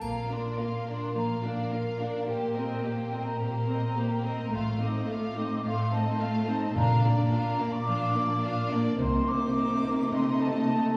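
Urgent and restless, this fast, dramatic romantic passage for symphony orchestra is cut from a longer piece and moves in a straight four-beat pulse. A lush, vibrato-rich violin section carries the melody with a focused, smooth top, while a small flute group plays a pure, tongued second line above it and a background violin section adds another second line beneath. Clear violas fill in the accompaniment, a bright concert harp rings out arpeggios in the background, and an expressive chamber cello section anchors the bass with warm portamento. Woody double basses join the bass line, drop out after the first moments and return at 4.5 seconds, while a dark, close triangle sounds only in the opening 1.1 seconds and hard-mallet timpani enter very quietly at 6.8 seconds. The harmony turns restlessly through Bb, Cm7/Bb and F7/A before ending on a diminished chord, all set in a wet recital-hall reverb heard from further back in the room.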